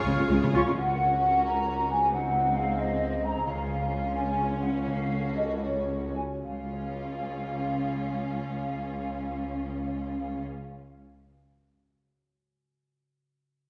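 A short classical orchestral excerpt in Db major and 6/8 opens on a Db chord. The harp's ringing, fingerpicked arpeggios sit in the background beneath two violin sections: a very quiet, dark and lush symphonic group carries the melody, while a smooth chamber group plays a second line. At once the violas add close, expressive accompaniment with portamento, and the rich, up-front cellos take the bass. They are joined only briefly by woody bowed double basses and a mellow tuba, while a very quiet horn section touches soft sustained chords and a clear clarinet sounds a single note. Soon a distant, hollow flute section adds a pure, vibrato-laden second line on top. The mood is urgent and restless at roughly 70-90 BPM in dotted quarters, and the pace slows from 2.8 to 6.4 seconds as the harmony moves through Gb/Db, Ab7/Db and Gbm/Db before returning to Db. A wet hall reverb surrounds the ensemble, and the harp rings on alone until 11.3 seconds.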